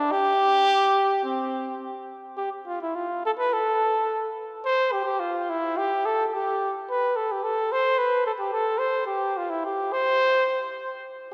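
Romantic and festive, this Mexican folk excerpt moves at 107 BPM in a straight 2/4 in C major, carried entirely by a solo trumpet from 0.0 to 11.0 seconds. The trumpet sits up front with a dark, classical tone, soft attacks, light vibrato and a smooth top, ranging from C4 to C5. A brief opening phrase gives way to a longer passage at 2.4 seconds, all bathed in a church's lush, lingering reverb.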